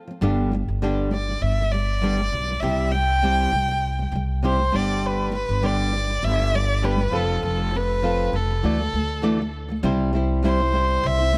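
Acoustic pop with a carefree, sunny lilt and a gentle swing, cut from a longer piece: fingerpicked flamenco guitar opens at 0.0 seconds, a woody, thumpy pizzicato upright bass on gut strings joins at 0.2 seconds, and a dark, nasal bowed violin enters at 1.1 seconds to carry an expressive melody with vibrato, portamento and tape echo, all three up front in a light reverb.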